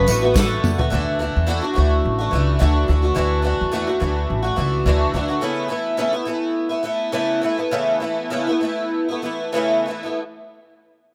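Acoustic pop at 106 BPM in A major with a lightly swung sixteenth feel, easy-going and carefree, cut from a longer piece. A fingerpicked nylon-string guitar with digital delay offers a brief melody while a bright, jingly tambourine plays in the background and an unplugged drum kit, played with bundle sticks, delivers a short fill ending at 0.9 seconds. This leaves the boxy, shimmering, octave-doubled twelve-string guitar up front over a woody pizzicato upright bass that stops at 5.4 seconds, after which the picked twelve-string carries on alone as the tempo slows through to 10.2 seconds, over chords moving from Bm7 to Dadd9 to Aadd9/C#, set in light reverb and studio ambience.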